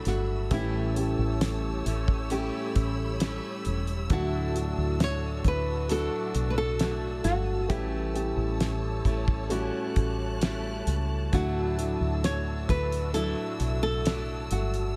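A tender, hopeful pop ballad excerpt in D major opens at a slow 66 BPM, with a flamenco guitar carrying the melody in a fingerpicked voice where finger squeak catches the ear, over a concert grand piano whose deep bass anchors the accompaniment. Beside them, a jumbo steel-string acoustic guitar fingerpicks arpeggios with bright, fresh strings and a full body, touched by tape echo. A studio string section holds lush, bowed chords from a distance, colored by vibrato and expressive portamento. Just after the start, a fingered electric bass enters up front, round and punchy with a foam-muted, dark tone, alongside a damped 70s drum kit playing hi-hat, kick and snare, its fat snare and tight kick sitting dry and smooth with a rolled-off top. The harmony sways gently between Dadd9 and A7 in a straight 4/4, and the whole mix sits close with little reverb.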